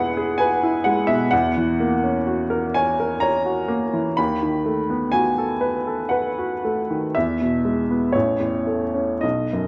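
Dreamy and nostalgic, this brief cut from a longer romantic classical nocturne in E major drifts in 3/4 at a rubato 47-65 BPM, its lone upright piano sounding intimate and woody with audible action noise, set up front in a moderate recital-hall reverb and colored by worn cassette tape whose warbly pitch drift lends a faded, remembered quality as the harmony moves from E through F#7/E and B7/D# back to E before touching A.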